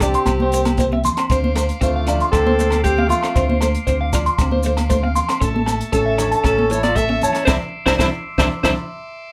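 Highlife guitar band excerpt in D minor at 116 BPM, warm and bittersweet, led by a clear, punchy alto saxophone with vibrato and scooped notes up front over a dark, breathy trumpet second line, bright twangy guitar arpeggios, a background guitar accompaniment, a round, deep dub fingered bass, a dry cocktail kit with a high-tuned snare, background congas, agogo bells and maracas, and a buzzy combo organ with phaser entering at 1.3 s, all in a small live room, closing with a band accent from 7.5 s and a drum fill at 8.5 s over chords moving from Csus2 through Dm7 and A to Cadd9.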